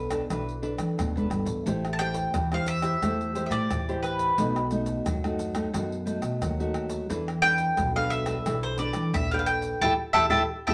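A bright, picked mandolin with doubled strings sits up front and carries the melody from 1.9 seconds in this lively, bittersweet samba and choro piece in A minor, cut from a longer performance. Beneath it, a fingerpicked nylon-string guitar in a classical style, also close and present, supplies the accompaniment over a straight 4/4 at 88 BPM. A woody, pizzicato upright bass strung with steel anchors the low end, while tube shaker, a tight surdo, pandeiro and tamborim played with soft hands enter almost at once, sounding close and dry. The harmony moves from E7sus4 through Am7 and B7 back to E7sus4, landing on A5 as the band hits an accent together at 9.8 seconds. A wet studio reverb with a short tail gives the acoustic ensemble a sense of space.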